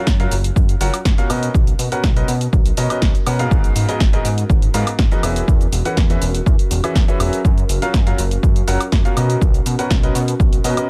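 A punchy, tape-toned electronic kick drum sits up front in this euphoric, joyful piano house excerpt, joined by a punchy, tape-warm analog drum machine playing hi-hat, shaker, woodblock and a punchy snare. A clear, woody, vintage upright piano carries the riff through lush major-seventh and ninth chords, its dub echo and sidechain pumping set against a fat, nasal, saturated sawtooth bass that pumps along with a quick filter pluck. Underneath, a warbling, lo-fi pad enters at 0.5 seconds with slow-blooming chorus and reverb, adding a dark, nostalgic haze to an otherwise dry, close mix.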